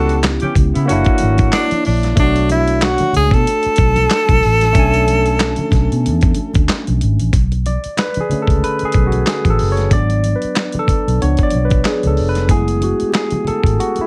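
A lightly swung sixteenth-note groove drives this late-night, sultry slice of neo-soul R&B, cut from a longer piece and carried by a dusty, gritty, compressed sampler-style drum kit with a thumpy kick, medium-tuned snare, hi-hat and handclaps sitting up front. Underneath, a vintage foam-muted fingered electric bass gives a dark, round and punchy low end, while very quiet congas with a thick, damped skin and soft hands add gentle percussion. A breathy tenor saxophone leads the melody in a jazz style, with vibrato, a soft attack and scooped notes, and a mellow horn section adds brief vintage-sounding stabs that end at 1.7 seconds. The sax steps away at 6.7 seconds. From 7.3 seconds a bright, barky tine electric piano, lightly overdriven through a combo amp with a phaser, moves from accompaniment into a solo over minor-seventh and altered dominant chords. A light reverb gives the whole mix a smoky sense of space.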